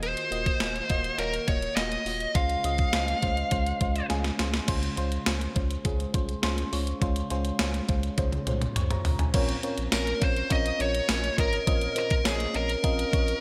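A straight 4/4 pulse at 103 BPM drives this urgent, moody 1980s-style pop excerpt, where a thumpy, sampler-style 12-bit drum machine with gated reverb and occasional fills sits up front beside a round sine sub bass, a warbling, mellow FM electric piano with phaser and a noise layer moves from Ebmadd9 through Dbmaj7 to Bbmadd9, and a dark, overdriven lead guitar carries the melody, dropping out at 4.1 seconds and returning at 9.9 seconds, the whole mix set in light reverb and bright digital production.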